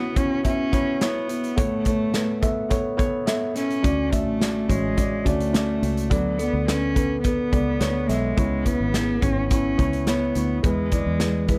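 A bowed cello and a felt-muted upright piano open this hopeful, anthemic piano-driven pop excerpt together at 0.0 seconds, with a modern studio drum kit joining at 0.2 seconds. The solo cello carries the melody with vibrato, its tone focused and smooth on top. The soft, mellow piano accompaniment sounds intimate and close. The acoustic drums bring a punchy kick, a medium-tuned snare and hi-hat, set up front in a pumping studio room. A fingered electric bass arrives at 3.8 seconds, dark, round and foam-muted, with a direct, amped sound. At a steady 106 BPM in a straight 4/4, tuned to A4 = 438 Hz, the chords move from C#m7 through Aadd9, Dmaj7 and Bm7/D, then back to C#m7 before landing on E, all in a dry, close sound.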